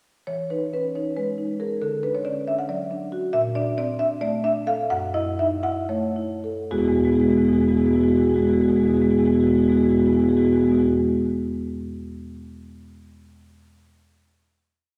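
A solo marimba played with medium mallets carries this short contemporary classical piece. Its rosewood bars give a woody, airy tone that sits up front in a reverberant concert hall. The mood is flowing and playful, set in E lydian and in a rubato 7/8 that moves at 208-281 BPM counted in eighths. A single-line melody with rippling figuration spans E2 to F#5 over a progression of Emaj7, Dmaj7, A#maj7 and F#m7. From 2.6 seconds the playing slows down, and at 6.7 seconds it settles onto a final Eadd9 chord that rings out in the hall until the piece closes at 10.9 seconds.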